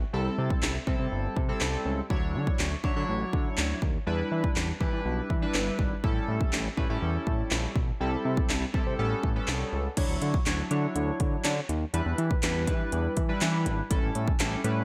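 Bright, 1980s-style digital production with light reverb and digital ambience frames this summery, carefree dance-pop excerpt in D major at 122 BPM, with a straight 4/4 feel. A fat analog bass with a thick, detuned sawtooth tone and a glossy, chorused polysynth with evolving pulse-width modulation both pump against the sidechain, while a punchy house drum kit enters at 0.5 seconds with cracking snare, metallic hats, handclaps and crash under gated reverb. The chords move from C6 through Dmaj9, Em7 and A7, and a new section begins at 10.0 seconds on Dmaj9.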